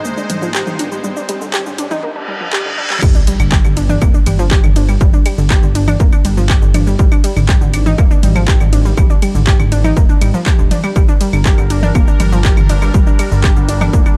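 The overdriven electronic kick drum stands out most, landing heavy and up front once the drop hits at 3.0 seconds in this driving, dramatic slice of melodic techno cut from a longer piece. Before that, a short build-up gathers tension: a riser, a filter sweep across the analog pluck's arpeggios, a reverse cymbal and a drum fill all lead into an impact, with these sound effects sitting in the background. The pluck runs throughout, round and detuned with ring modulation, chorus, delay and sidechain pumping. Beneath it, a menacing detuned saw bass swells and evolves with a saturated edge and sidechain pumping. The overdriven techno drum kit layers claves, handclaps, shaker, hi-hat, ride, crash and toms, while an airy, bright resonant pad sustains chords at the start and returns at 11.0 seconds. The dark production has a digital ambience and a high-pass filter, and the harmony moves from Ab through G5 and Ab5 to Gm.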